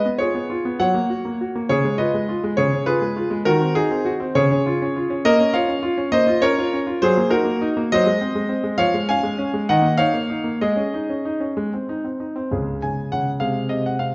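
A 6/8 pulse moves at 67 dotted-quarter beats per minute, handled with a flexible rubato that lets the phrases breathe. This is a graceful, cheerful classical-period piano sonatina, cut from a longer piece, played by a solo grand piano with a clear, smooth, slightly vintage tone and short sustain, sitting up front in the sound. The piano spans from Db2 up to Ab5, and the harmony opens on C#7 before settling into Db major from 5.3 seconds, passing through Bbm, Ebm/Gb and Ab7/Gb toward a cadence on Ab. At 12.5 seconds a brief new section begins on Db5 and moves to Ab/C before the excerpt ends at 14.1 seconds. A wet recital hall reverb with a 1.4-second decay surrounds the instrument, giving its clear tone a gentle halo of space.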